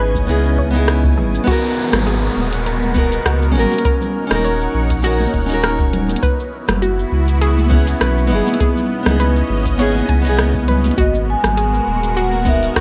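Warm and wistful, this sunset chillout excerpt sets an up-front, fingerpicked nylon-string guitar with delay over a lush, detuned unison pad with chorus and phaser, a mellow round pluck playing arpeggios in the background with chorus and delay, and a deep, sine-like sub bass, while an airy, wind-like tuned noise texture breathes only through the first 1.5 seconds, an analog electronic kick, distant high-tuned congas and an overdriven deep house kit of cabasa, metallic hi-hat and rim click set a swung groove, a downlifter sounds in the background from 1.5 to 6.2 seconds, and a dry, close-miked vibraphone with soft mallets and delay enters at 11.0 seconds to carry the melody.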